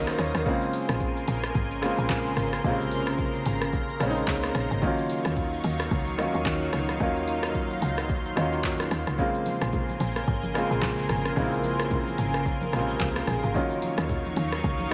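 Soaked in a dreamy, lush hall reverb, this soulful late-night amapiano excerpt swings gently as a polished, up-front grand piano comps over Bbm9 and Ebm9 chords, a thick detuned pad pumps with chorus and phaser, a woody, punchy log drum bass drives below, a soft overdriven electronic kit of kick, handclaps, hi-hat, rim click and shaker sits up front, and very quiet ringing congas join at 9.5 seconds.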